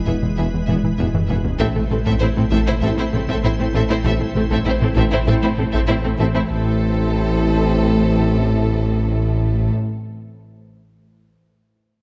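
A soft, organ-like pad with chorus and built-in reverb, a very quiet mellow French horn section and a deep, punchy sine sub bass open this tense, brooding hybrid orchestral and electronic film score cue in A harmonic minor at 98 BPM, joined at once by lush bowed strings (a rich violin melody, a warm, expressive second violin line, an intense viola part and rich cello and double bass sections), a dark tuba, a funky sawtooth analog bass riff that drops out at 6.4 s, and a compressed, saturated taiko ensemble that plays a fill at 1.0 s and falls silent at 6.3 s, all in a moderate scoring-stage reverb.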